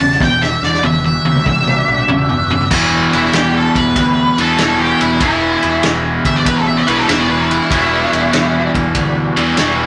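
A heavy, gritty blues rock and southern rock power-trio excerpt opens with a vintage drum kit rolling through a fill over a swung 4/4 groove, its muffled, dark cymbals and tight kick set in a small, lo-fi sound. Beneath it sit a bright, scooped, double-tracked overdriven guitar riff with spring reverb and a punchy fuzz bass, while an overdriven tonewheel organ holds thick sustained chords in the background, colored by slow rotary speaker, chorus vibrato and key click. An up-front octave-fuzz lead guitar, dark and distorted with wah, carries the melody and steps into a solo at 2.7 s before stopping at 8.7 s, all captured in a rough rehearsal-room recording with stone-room reverb.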